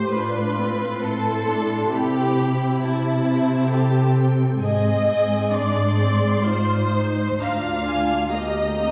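Rubato in 3/4 at 66 BPM, this tender, slow romantic movement for string orchestra in A minor, cut from a longer piece, sets a veiled, con sordino violin melody with a smooth top in the background over a second violin line up front, a dark viola section with light vibrato as accompaniment, and a lush, muted cello bass also up front, moving through Am, Am/C, Ab and Ddim in a wet concert hall reverb heard from further back in the room.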